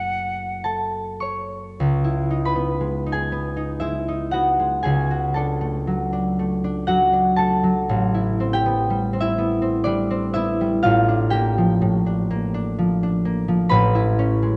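An airy, soft-attacked silver concert flute with vibrato sounds briefly on F#5 at the start of this mysterious, hazy impressionist classical fragment in a rubato 3/4 at 51-64 BPM, ending at 0.7 s while the mellow, ringing, fingerpicked concert harp carries on alone until 14.6 s across its low-to-high range through drifting chords from F#m7 and C#m9 to Amaj7, the duo set up front in a dark, wet scoring-stage reverb.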